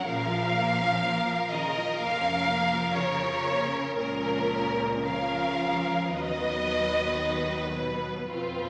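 A rich, lush violin section carrying the second line opens this yearning, solemn slow romantic movement for string orchestra in Bb minor at 52-62 BPM with rubato, joined at once by expressive, close violas and distant, smooth cellos, while at 0.1 s a clear, focused violin section takes up the melody above double basses sliding with portamento, every part bowed with vibrato in a wet scoring-stage reverb as the harmony moves from Bbm through Bbm/Db to B/D# at 6.1 s in this brief cut from a longer piece.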